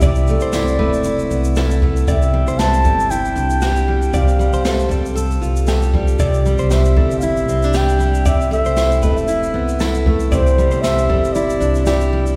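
A breathy, whispered flugelhorn carries the melody with light vibrato and scooped notes, giving this sunny, heartfelt acoustic pop excerpt at 116 BPM in C major an intimate glow. Up front, a full-bodied picked steel-string acoustic guitar and a woody, thumpy pizzicato upright bass anchor the lightly swung groove, while a compressed clean electric guitar adds arpeggios in the background and a distant brushed drum kit with a boomy kick and shaker keeps time. A very quiet, jingly tambourine enters at 0.5 seconds, and the whole sits in a lush church reverb over chords that move between A minor and C with a passing F over C.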